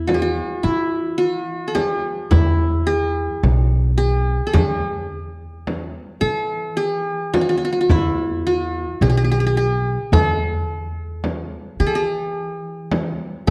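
This Arabic maqam ensemble piece, cut from a longer performance, has a festive, warm mood and moves at 108 BPM counted in eighths, in a straight 10/8 metre set in E maqam huzam. The qanun carries the melody, plectrum-plucked on triple strings with a bright-edged tone placed up front, ranging from E4 to an A4 lowered by 40 cents. Beneath it, the upright bass plays pizzicato on steel strings, giving a woody, growly bass line from B1 to E3. A frame drum joins at 0.1 s, close and present with a live-room character, and all three parts continue to the end at 13.5 s. The whole is set in a moderate recital hall reverb with a dark overall production.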